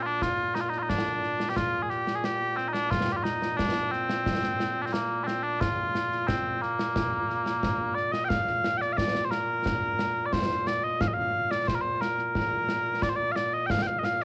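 A home cassette recording with light reverb and a small room's ambience frames this proud, ceremonial Scottish pipe tune, cut from a longer piece in a straight 4/4. Mellow small bagpipes carry the melody solo and up front, their sweet, continuous tone shaded with vibrato, while concert snare and bass drum enter at 0.2 seconds in a live room with bright cymbals and a cassette-tape colour, sitting behind the pipes. The tune moves into a new section at 8.3 seconds and runs on to 14.2 seconds.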